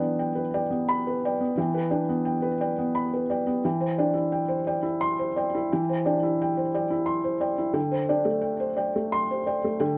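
A close, intimate sound opens this brief cut from a longer neoclassical minimalist piano piece, with a felt-muted upright piano placed up front in a light reverb. The piano plays alone for the full 10 seconds, its mellow, muted tone carrying audible action noise that adds a natural, personal quality. In E minor at 87 BPM in 3/4, the playing moves with a rubato feel, spanning from D3 up to C6. The harmony shifts from Em7 to Cadd9/E at 3.6 seconds and settles on D7sus4 at 7.8 seconds. The mood is wistful and reflective, suited to quiet contemplation.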